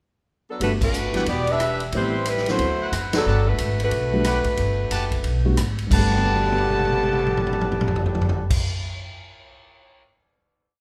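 A moderate recital-hall reverb surrounds this short, energetic big band swing piece in G major at 181 BPM, which opens with a pickup at 0.5 s as the mellow saxophone section states a motif-based melody in tight four-part block voicing over Gmaj9, Em9, Am9 and D13 harmony. Beneath it, the woody pizzicato upright bass plays in two, the dark baby grand piano comps in syncopated drop-2 voicings with audible action noise, and the clear trumpet section adds brassy syncopated stabs with light vibrato, while the band lands accents at 0.8 and 3.1 s. The distant, roomy drum kit drives a ride cymbal pattern with a punchy kick and rolled-off top, and its fill from 6.1 s carries through the final chord until the drums close the piece at 10.0 s.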